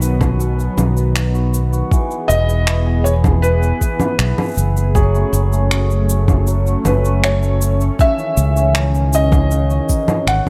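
A dry, close recording with very little room sound opens this playful, hopeful folktronica fragment, cut from a longer piece in an unhurried straight four. A felt-muted upright piano carries the melody, soft and intimate with its action noise audible, and a touch of delay trails its notes. Beneath it, a detuned sawtooth analog pad holds smooth, mellow sustained chords with chorus and a long release. A hammered dulcimer adds bright, shimmering arpeggios that ring out through their own delay. A punchy fingered electric bass sits up front, and a tape-warmed mix of electronic shaker, congas and finger snaps, re-recorded in a small room, plays from the start, joined by a soft electronic kick at 0.2 s. The harmony moves from B to E, then F#m, and settles on C#madd9 at 8.0 s.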